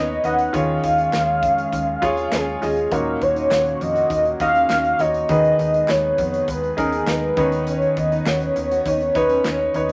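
A velvety synth lead, detuned and touched with chorus and vibrato, carries the melody up front in this bittersweet, earnest piano-driven pop excerpt at 101 BPM, moving over chords from Badd9/D# through Ebm7 and Abm/Eb. A clear, intimate baby grand with audible action noise accompanies it, joined by a breathy pad with chorus, a full-bodied fingerpicked steel-string guitar riff, and a snappy FM bass with a metallic attack. A polished studio kit with a punchy kick enters at 0.2 seconds and crisp, dry group handclaps join at 1.1 seconds, all set in moderate studio reverb over a bed of vinyl crackle.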